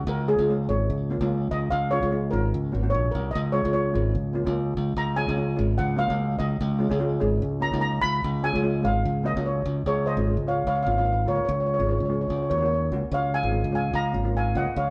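Bouncy and festive, this calypso excerpt features a shimmering, airy lead steel pan carrying the melody, taking a solo through the first 9.9 seconds before the music moves into a new section, over a boxy second pan's accompaniment and a bright, direct fingered electric bass, all heard as a band playing live together in a stone room with moderate reverb.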